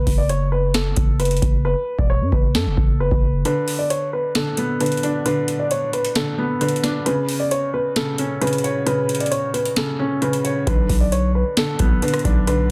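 A melancholic, dark trap fragment in half-time, this hip hop piece sets a dark, mellow concert grand piano up front carrying the melody in a high, narrow range. A growling, buzzy 808-style bass with a fast attack and decaying tail sits underneath at the start, drops out at 3.4 seconds, and returns at 10.7 seconds. A booming analog drum machine, re-recorded in a large room, supplies a deep kick, crisp snare, rim click and metallic hi-hats, with the hats cutting out briefly early on and the kick falling away through the middle stretch. From 3.5 seconds a felt-muted upright piano adds soft, intimate accompaniment, its action noise audible and its notes short. The harmony moves from F#m to Bm7, passes through a chordless stretch, then lands back on Bm7, all within a dense, heavily limited master touched by light reverb.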